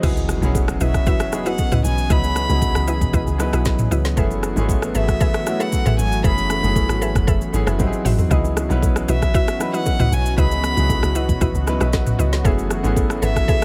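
Amapiano with a soulful, hypnotic feel, this 13.6-second excerpt opens on a drop marked by a very quiet electronic impact, as a deep, round log drum bass with a dark FM edge and an up-front afro-pop kit of woody snare, metallic hats and toms drive beneath a clear grand piano that carries audible action noise. A smooth detuned sawtooth pad with chorus sits in the background, while a woody, mallet-like synth pluck adds chorused, delayed stabs and bright congas and bongos stay very quiet in the mix. From 0.8 seconds a single bowed violin floats above in a pure sul tasto tone with delay, over chords moving from C#m11 through F#m11 to G#7b13, with a drum fill at 7.8 seconds, all in a dry sound.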